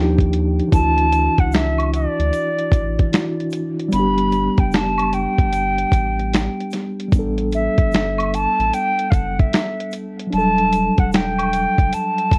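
The recording has the worn, warbling character of old cassette tape, with pitch drift and a moderate studio reverb. It is reflective, melancholic lo-fi hip hop at 75 BPM in 4/4, with a lazy swing on the sixteenths, cut from a longer piece. A close-miked silver concert flute carries the melody up front in a breathy, straight tone, softened by a low-pass filter and a plate reverb. Beneath it, a mellow tine electric piano plays the chords through its built-in speakers with a cassette and low-pass colour, moving from D#maj9 to Dmaj9, Gmaj7 and Em11, while a round analog bass holds down the deep, dark low end with sustained notes. A gritty, compressed sampler-style soul kit enters at 0.2 seconds with a thumpy kick, a medium-tuned snare, hi-hat and finger snaps, and a distant egg shaker and woodblock join in the background at 0.7 seconds.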